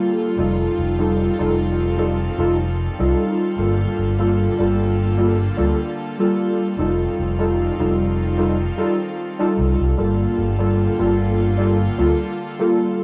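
The recording has a dry, gritty hardware sound set in a digital ambience, giving this hazy, woozy vaporwave fragment from a longer piece a worn, nostalgic feel. At 75 BPM in 4/4 with a straight feel, in G minor tuned to A4 = 439 Hz, the harmony moves between F9 and Gm9. Warbly lo-fi synth keys carry the accompaniment up front, their detuned square, sawtooth and triangle tones colored by analog chorus, vintage 12-bit sampler grit, tape echo and a filter sweep into a mellow, decaying haze. An overdriven fingered electric bass enters at 0.4 seconds, amped and punchy, and drops out at 12.1 seconds. Behind them, a chamber string section holds bowed, sustained chords with a soft attack, sounding distant, pure and floating.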